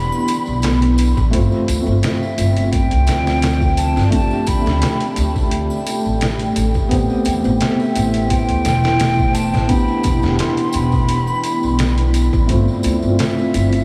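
A dreamy mix soaked in a huge ambient reverb with a long 8.6-second tail, yet with a small room ambience beneath it, sets a hypnotic, cinematic trip hop mood at 86 BPM in A minor, heard in a short cut from a longer piece. A hollow concert flute carries the melody, close-miked and airy with vibrato and a crisp attack, trailed by tape echo. A felt-muted upright piano plays soft, dark accompaniment with audible action noise, colored by tremolo, vintage 12-bit sampler grit, tape echo and a filter sweep across the whole passage. A deep, warbling pad of detuned sawtooth and sine layers holds sustained chords through chorus and its own reverb, while a woody pizzicato upright bass sits up front. The close, dry tambourine and triangle join at 0.1 seconds, and a compressed, pitched-down sampler-style drum kit with a thumpy kick, medium-tuned snare and hi-hat enters at 0.3 seconds in a lightly swung 16th-note feel, as the harmony moves through chords such as Em7, G7sus4, Dsus4 and Am7.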